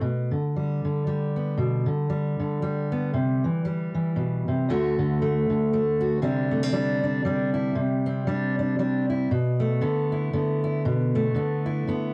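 A fingerpicked steel-string acoustic guitar carries this short folk piece alone, its full-bodied dreadnought tone sitting up front in the mix. The mood is pastoral and hopeful, moving at 116 BPM in a lilting 3/4 with a gentle swing on the eighth notes, and the instrument is tuned slightly flat of standard pitch. The guitar ranges from a low D2 up to F#4, moving through G/B, C and D before shifting at 6.2 seconds into a second passage built on Csus2 and then Bm7 from 9.3 seconds. The recording has the homespun character of a cassette tape, with light reverb and the ambience of a small room around the strings. Cut from a longer piece, it lasts about 12 seconds.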